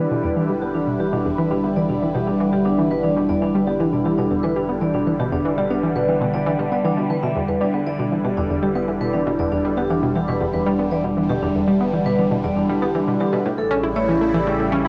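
A steady, straight 4/4 pulse at 118 BPM drives this hypnotic, mysterious stretch of sequencer-driven ambient space music in E minor, cut from a longer piece and running to 14.9 seconds. A swirling phased analog pad sits up front with detuned sawtooth chords, soft in attack and long in release, thickened by phaser and chorus. An analog pluck plays a bright riff with a fast attack and short decay, its sawtooth, square and triangle tones roughened by a noise layer and ring modulation, carried by chorus and analog delay while a filter sweeps across it for the whole passage. A vibraphone struck with medium mallets, motor off, adds metallic, ringing arpeggios through a low-pass filter and analog delay, while a deep, round analog bass blending sawtooth and sine sits dark in the background. The harmony rests on Em7 before turning to A7 at 13.5 seconds, and a wet studio reverb and the character of a home cassette recording give the sound a lo-fi haze.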